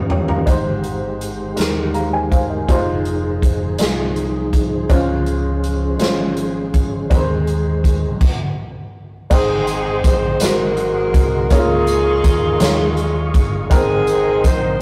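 In a slow, straight 6/8 at 54 BPM, this hopeful, uplifting gospel passage in Ab major opens with a fill on a punchy, up-front big-band drum kit with dark cymbals, as a worn, woody, slightly detuned upright piano, a soft, flute-like tonewheel organ through a slow rotary speaker and a punchy fingered electric bass move from Abmaj7 through Fm7 and Dbmaj7; after a stop at 8.2 seconds, a clear, smooth saxophone section takes the melody at 9.3 seconds over Ab7, Db69 and Eb9sus4 chords, with a jingly tambourine in the background, all captured in a rough rehearsal-room recording with warm saturation and moderate reverb.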